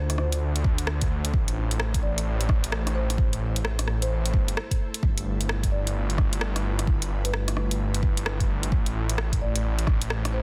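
A dense, heavily limited digital sheen wraps this nocturnal, rainy future garage excerpt at 130 BPM in A minor with swung 16ths, where a deep, tape-warm electronic kick sits up front beside a menacing, detuned sawtooth bass with a filter swell and sidechain pumping, a layered garage kit adds hi-hat and rim click with soft clipping on the snare, an ethereal, airy pad holds chorused, reverb-soaked Dm7, Am7 and G13 chords in the background, and a woody soft-mallet marimba plays a mellow melody through dub echo.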